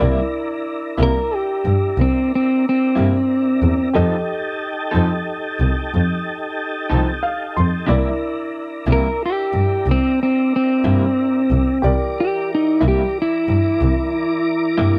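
A dry, close 1970s-style studio sound frames this rollicking yet laid-back blues excerpt in 12/8, where a rich, bowed double bass sits up front beneath a clear, intimate grand piano with audible action noise and a fill at 6.9 s, a picked electric guitar through a small old amp with tremolo, and a smooth tonewheel organ holding chords through a slow rotary speaker with chorus vibrato, while from 1.0 s a dark, slightly broken-up, fingered electric guitar carries the melody over a C7 to F7 change.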